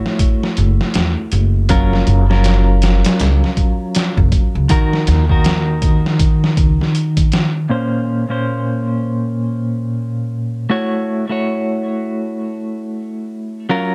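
In a dark, lightly reverberant mix, this brooding, smoky trip hop excerpt at 80 BPM pairs a compressed, picked clean electric guitar, treated with tremolo, tape echo and filter sweeps, with a gritty, pitched-down sampler-style kit of thumpy kick, medium-tuned snare and hi-hat and a woody pizzicato upright bass, before the drums drop out at 7.5 seconds and the guitar carries the chords from Bbmadd9 back to A6 alone until 13.9 seconds.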